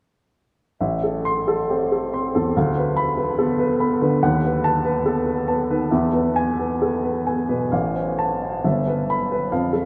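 Passionate and brooding, this short fragment of a romantic character piece for solo piano unfolds in A minor at a slow 65 to 74 BPM in 2/4, its rubato feel letting the pulse breathe and stretch. A woody upright piano, placed up front, carries everything alone from 0.8 to 9.9 seconds, ranging from a deep G1 up to C6. The harmony moves from A minor through a diminished chord and a B7 toward E at 5.9 seconds, then drifts to F and E minor as the clip ends. A huge, wet reverb with a 7.9-second tail surrounds the instrument, placing it in a vast, echoing space where each chord lingers long after it sounds. Cut from a longer work, the passage feels like a single searching phrase suspended in that cavernous ambience.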